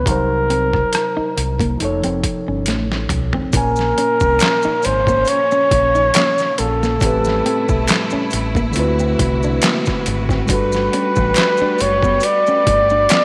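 A moderate echo-chamber reverb gives this late-night, soulful R&B and neo-soul excerpt a roomy glow at 69 BPM with a lightly swung 16th feel, as a breathy, whispered flugelhorn carries the melody up front over a reedy, bright electric piano, a clean, compressed electric guitar line in the background, and a dark, round fingered electric bass. The gritty, overdriven boom bap sampler-style kit is pitched down and sits up front with a thumpy kick and medium-tuned snare, and it plays a drum fill from 2.7 seconds. At 3.5 seconds a lush, bowed studio string section enters with sustained, portamento-touched chords, joined by close, dry maracas and finger snaps tucked in the background, as the harmony moves from Bbm7 through Am7 and D13 to Gmaj9.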